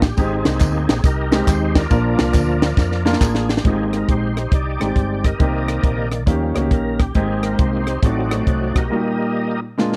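A swung eighth-note feel at 137 BPM in 4/4 drives this soulful, jubilant uptempo gospel passage, cut from a longer piece. The crisp fusion drum kit sits up front with a high-tuned snare, tight kick, hi-hat and rim click, and it plays fills leading into the second section at 3.6 seconds and again near the close. An overdriven tonewheel organ solos throughout, its full, gritty tone carrying key click, chorus vibrato and a slow rotary speaker. A natural-sounding grand piano with long sustain also sits up front in support, while a dark, round hollow-body electric bass, fingered and punchy, anchors the low end until 8.9 seconds. Tambourine, tube shaker and group handclaps sit in the background for the opening 3.6 seconds only. The harmony moves through Abmaj7, Bb, Cm7, Eb7 and Adim7 before settling on Eb/Bb, heard in a dry, close small-room sound with a 1970s studio character.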